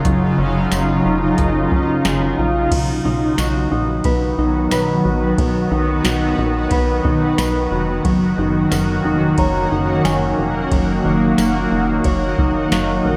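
A soft vintage rhythm box sets a straight 4/4 pulse at 90 BPM, its deep kick, crisp snare, metallic hi-hats, ride, crash and tambourine sitting up front from 0.1 seconds. This haunting, melancholic dream pop passage, cut from a longer piece and tuned slightly low to A4 = 437 Hz, moves from F#maj7 to Bmaj7 at 2.7 seconds and settles on F#6 at 8.1 seconds. A cloudy granular pad holds sustained chords up front, blurred and evolving with slow attacks, long releases and its own built-in reverb. A dark, clean, fingered electric guitar plays compressed arpeggios through subtle chorus and diffuse ambient delay. Underneath, a plucky analog bass gives punchy, funky notes with a fast attack that then decays, while a delicate, bell-like celesta adds sweet, band-limited texture in the background, also trailed by delay. The dreamy mix is soaked in moderate plate reverb and digital ambience.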